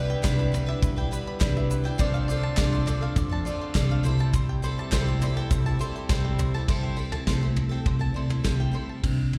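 Anthemic and warm, this short cut of building indie folk moves at 102 BPM in a straight 4/4. A shimmering, octave-doubled twelve-string acoustic guitar and a twangy, fingerpicked banjo arpeggio, each with slapback echo, ride over a round, punchy electric bass up front, a polished brush drum kit with punchy kick, a reedy harmonium in the background, a grainy egg shaker and crisp, very quiet handclaps. At 6.7 seconds the harmonium stops and a full-bodied, fingerpicked steel-string guitar enters, finger squeaks and all, with the band heard like a live gig through a venue PA in recital-hall reverb.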